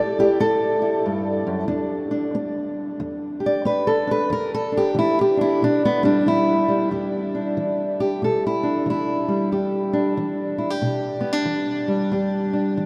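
A loping swing feel at 92 BPM in 4/4 carries this brooding, soulful acoustic country blues in E minor, cut from a longer piece. A single fingerpicked steel-string acoustic guitar plays alone, ranging from E2 up to D5, its tone dark and woody with the dull edge of old strings and a close, up-front presence. The harmony moves from A5 to Em7 at 1.7 seconds, with the guitar carrying a solo passage through the first section before a second section begins at 6.9 seconds and runs to 12.9 seconds. A huge, wet reverb with a 7.5-second tail surrounds the guitar, placing it in a vast, echoing space that lends the lonely playing a cavernous depth.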